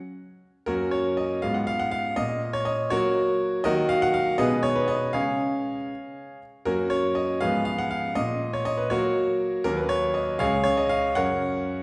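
A classical-period piano sonatina in a lilting 6/8, this short cut from a longer piece feels playful and graceful. A clear grand piano plays alone from 0.7 seconds to 11.8 seconds, ranging from the low bass up into its upper middle register. Its tone is natural and intimate, with the soft clatter of the action audible beneath the notes, and it sits up front even though the listener seems placed further back in a recital hall. The hall's reverb is generous, lending each phrase a lingering bloom that lasts well past the attack. The harmony moves through a gentle sequence that circles twice back to its home chord, with the second pass turning toward a cadence that closes on the tonic at 11.2 seconds.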